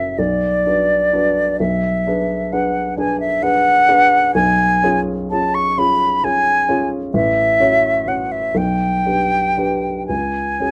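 An airy, mellow silver flute with gentle vibrato and soft attacks carries a yearning, elegiac melody in this romantic classical duo, drifting in a rubato 6/8 over the intimate accompaniment of a dark baby grand piano whose short sustain and audible action noise sit up front in a lightly reverberant, shadowy mix, the passage cut from a longer piece.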